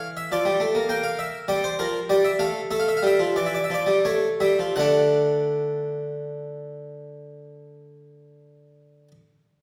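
This classical, baroque-style two-part invention for solo harpsichord is driving yet solemn, moving in 3/4 with a straight feel between 82 and 104 BPM, tuned to A4 = 439 Hz, and slowing down through its first 4.8 seconds as the harmony passes from Dm/F and Bb through G5, A7sus4 and A7. At 4.8 seconds a new section arrives on D. The Flemish-style harpsichord, close-miked and up front with octave strings and a brilliant, full, plucked tone spanning D3 to G5, sits within a wet recital hall reverb in this brief portion of a longer piece.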